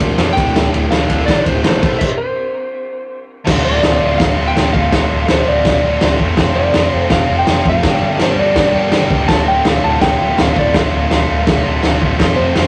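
A rough rehearsal-room recording with tube saturation and a moderate short reverb frames this raw, swaggering garage rock cut at 165 BPM in D minor, where a dark, slightly broken-up electric slide guitar carries the melody with digital delay over a biting, double-tracked overdriven guitar riff. A growly fuzz bass with overdrive and tube saturation sits beneath, while a muffled, lo-fi vintage drum kit with a punchy kick and dark cymbals sits up front in the mix. After a stop from 2.0 to 3.5 seconds, the band drives on through Dm, F and Gm changes until the piece is cut off at 12.7 seconds.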